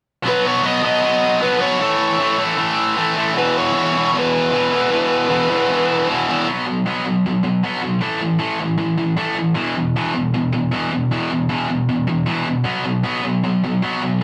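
Punk at 155 BPM, rowdy and energetic, this rough rehearsal-room cut pairs a tight, bright distorted guitar riffing through to 14.2 seconds and a second overdriven guitar riff that stops at 6.5 seconds, with a dark, smooth overdriven lead melody up front until 6.1 seconds, all in moderate reverb as the chords move from B, A and E to power chords on B5, A5 and E5.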